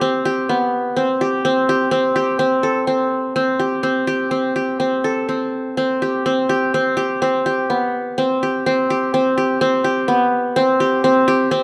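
Playful and shimmering, this contemporary instrumental fragment in 5/4 with a straight feel features a solo acoustic qanun played with fingerpicks, its bright-edged triple strings sitting up front within a dark production and a moderate recital-hall reverb.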